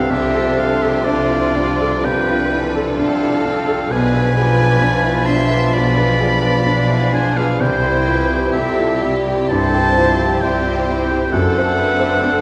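A lush, lyrical romantic classical movement for piano and orchestra, where an intimate concert grand with audible action noise carries the rubato melody together with distant, vibrato-rich violins, while a bright close-miked oboe, hollow airy flute and background clarinet weave second lines above mellow bassoon, viola, very quiet French horn chords and bowed cello and double bass, with soft calf-headed timpani entering at 7.6 seconds, all bathed in a church-like reverb.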